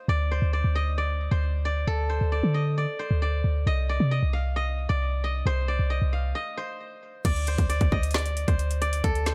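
Melancholic and menacing, this half-time trap excerpt opens with a bright, silvery steel-string zither played with fingerpicks, its ringing, low-pass-filtered melody sitting up front over a deep, boomy 808-style bass with a clean sine tone, fast attack and dark decay, as the harmony moves from Csus2/D to Cmadd9. After a stop from 6.4 to 7.2 seconds, an electronic trap kit enters with a hard-clipped kick, woody snare, metallic hats and crash cymbal, its tape-warm sound placed up front as the chord returns to Csus2/D. A digital ambience surrounds the parts.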